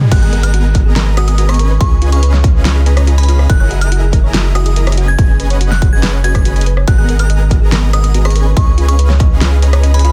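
A dense, heavily limited modern master with little reverb carries this emotional, lush future bass drop, cut from a longer piece and moving in a half-time feel. Up front, a punchy, tape-tinged electronic kick re-recorded in a large room hits until 9.3 seconds, while a deep, thick, saturated sub bass pumps under the sidechain. A layered pop drum kit adds a fat snare, warm hats, crash cymbal, rim clicks and toms. A huge, detuned unison supersaw riff with vibrato sits compressed and pumping, and above it a crystalline FM bell sings the bright melody through chorus, phaser and digital delay. Tucked in the background, a mellow, tine-like thumb-piano-style pluck traces arpeggios with its own chorus and delay, all over a cycle of G#m9, C#9, F#13 and B69/F#.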